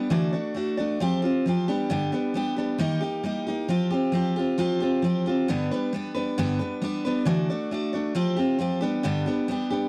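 A full-bodied dreadnought steel-string acoustic guitar, picked and placed up front, plays alone through this brief, jangly and nostalgic rock fragment, cycling through Dadd9, Fsus2, G and Eb chords in a dry, close 1970s-style studio recording with a small room ambience.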